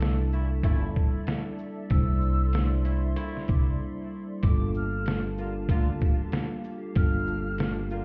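A gritty, sampler-style trip hop drum kit sits up front in this dark, moody boom-bap hip-hop excerpt, its pitched-down, compressed sound built from a thumpy kick, medium-tuned snare, hi-hat and shaker over a swung 4/4 groove. A woody pizzicato upright bass, also up front, holds down the low end. Above them, a soft-mallet vibraphone rings with a slow motor vibrato and a boxy, cassette-tape tone, while a hollow, flute-like pad sustains chords through an ensemble chorus. A breathy silver concert flute carries the high melody with vibrato, tongued notes, rolled-off highs and a digital delay. A distant, roomy horn section adds tight, mellow stabs from 0.3 s. A break falls between 3.8 and 4.4 s, after which the harmony shifts from C13 to Gm9, and the whole mix sounds muffled, as if heard through a wall, with stone room reverb.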